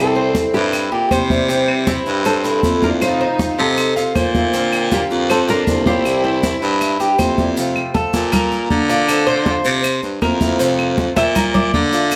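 Sunny and danceable, this short cut from a longer Cuban son and guajira track moves at 158 BPM in a straight 4/4, set in F major. A fingerpicked nylon-string guitar carries the melody with a classical touch, shadowed by a clear, lightly vibrato violin section in the background, and both stop at 7.2 seconds. Underneath, a bright, boxy archtop guitar fingerpicks the accompaniment with audible finger squeak, while a growling, raspy baritone saxophone sits up front playing the bass line with vibrato and gritty edge. The metallic double strings of the Cuban tres spin arpeggios through a tape echo and take over as soloist from 7.6 seconds. Congas with a thick, high-tuned skin played with soft hands sit close and dry, while grainy maracas and woody claves sound distant in a large room. The whole mix is heard from further back in a studio with moderate reverb, as the harmony moves from C and F7 to a closing run of F, Bb, Dm7, C7, F and Bb.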